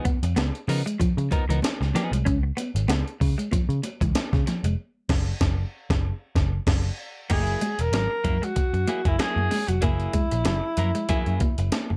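Funk at 95 BPM in 4/4 with a light 16th-note swing, this playful, strutting passage is cut from a longer piece and moves from a Db9 groove through a band accent around 4.8 seconds, where the chords drop out, into a Gb9 passage from 7.3 seconds. A breakbeat sampler-style drum kit sits up front with a gritty, tape-warm character, a thumpy kick, a medium-tuned snare, hi-hat and crash, sounding compressed and re-recorded in a small room. Beside it, a vintage muted picked electric bass is round, dark and foam-muted, also up front and amped. Two clean electric guitars share the harmony: a dark picked riff with ensemble chorus runs nearly throughout, while a compressed accompaniment part with vibrato plays only at the start and returns at 7.3 seconds. At that same point a breathy alto saxophone enters with a mellow, distant, roomy solo melody and light vibrato. Throughout the passage, very quiet, bright, high-tuned congas with thin skins and hard hands add a band-limited vintage color under light reverb.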